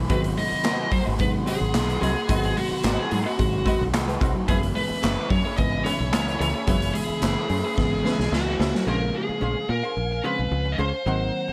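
A distorted, high-gain lead guitar sits up front, carrying the melody over a strutting funk groove in a straight 4/4 feel. Beneath it, a raw garage drum kit of kick, snare, hi-hat and handclaps sounds punchy and gritty in a pumping stone room, rolling into a fill at 7.8 seconds and stopping as the harmony shifts. A fingered electric bass, bright and foam-muted, holds down the low end, while a barky, reedy electric piano fires stabs through overdrive and phaser. In the background, a clean, twangy guitar plays a riff with spring reverb until 8.8 seconds, a dark, compressed hollow-body archtop adds accompaniment, and a lush bowed string section holds sustained chords with vibrato and portamento. The chords move from Ab7#9 to Gb9sus4, then land on Bbm9 at 8.9 seconds in this section cut from a longer piece, with studio reverb giving the mix its space.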